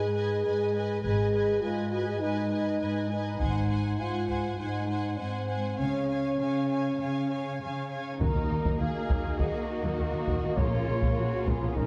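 Mellow French horn chords anchor this epic, relentless cinematic orchestral cue in Eb minor at 101 BPM, set over lush bowed strings: a vibrato-rich violin melody with portamento, a smooth second violin line, even violas, expressive cellos, and woody double basses that enter at 1.0 s. Close, dry taiko hits arrive at 3.4 s and return at 8.2 s alongside distant, roomy trumpet stabs and very quiet timpani, inside a moderate scoring-stage reverb with a dark, warm production.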